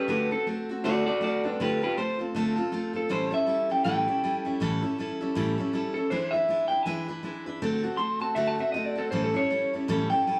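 A clean, twangy electric guitar solo through a small old amp, slightly broken-up and up front, carries a rowdy, upbeat swung rock passage cut from a longer piece, with a bright, fresh-stringed picked dreadnought acoustic guitar playing accompaniment through D7, Dm7, A7 and E7 changes as the duo plays live in a large studio room with moderate reverb.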